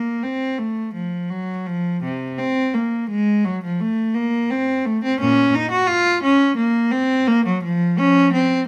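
A close, up-front solo cello, bowed smooth and even with vibrato and a warm tone, carries a grave, introspective baroque-style suite movement in a free, rubato four, ringing in a moderate stone room for this brief cut from a longer piece.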